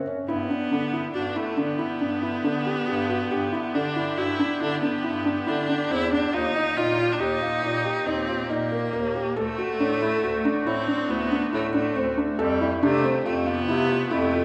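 Set in a straight 7/4, this shimmering, playful excerpt of contemporary chamber music opens with a distant woodwind section holding sustained chords in the background and a mellow bass clarinet carrying the bass, while a felt-muted upright piano adds soft, intimate arpeggios with audible action noise from 0.1 seconds and a focused, up-front viola sings a bowed second line with vibrato from 0.3 seconds, all bathed in the wet reverb of a church before the harmony shifts to Fadd9 at 12.4 seconds.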